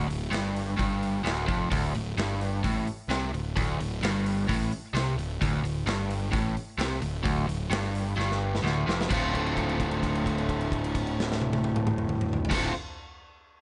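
A small, lightly reverberant room with a rolled-off top end frames this heavy, brooding blues rock and southern rock fragment in D minor, moving at 130 BPM in a straight 4/4. An up-front, double-tracked overdriven guitar grinds out a compressed riff on D5, while a fuzzy, overdriven picked bass growls low beneath it and a punchy acoustic kit with bright cymbals and a medium-tuned snare drives along up front. A drum fill at 8.2 seconds leads into a held note over Dm7 from 9.1 seconds until 12.5 seconds.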